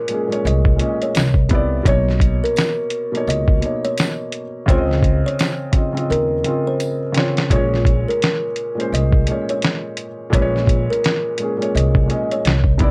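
A lightly swung 4/4 groove comes from an up-front, lo-fi sampler-style drum kit, its compressed, pitched-down, muffled hits built on a thumpy kick, a medium-tuned snare and hi-hat, with a drum fill from 6.1 to 7.5 seconds. This reflective, nostalgic lo-fi hip hop excerpt is carried by a soft, intimate felt-muted upright piano with audible action noise and a cassette-tape colour, comping through Bbm9, Cmaj9, Bmaj9 and Dbmaj9 before landing back on Bbm9 at 7.5 seconds as the second section begins. A mellow kalimba plays the melody with a ringing fingertip pluck, fed through an analog delay. A woody pizzicato upright bass with steel strings enters at 0.5 seconds to anchor the low end. A jingly tambourine sits in the background through the opening section, and a light reverb gives the mix a gentle sense of space.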